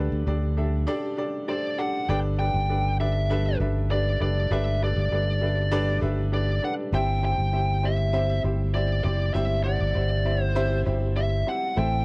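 A woody, intimate upright piano with audible action noise and a punchy fingered electric bass open this uplifting, warm pop excerpt in G major at 99 BPM, with a brief break at 0.9 seconds before a biting, overdriven lead guitar enters at 1.5 seconds to carry the melody over chords moving from Dsus4 to Gadd9 and then C, all captured in a dry, close 1970s-style studio sound.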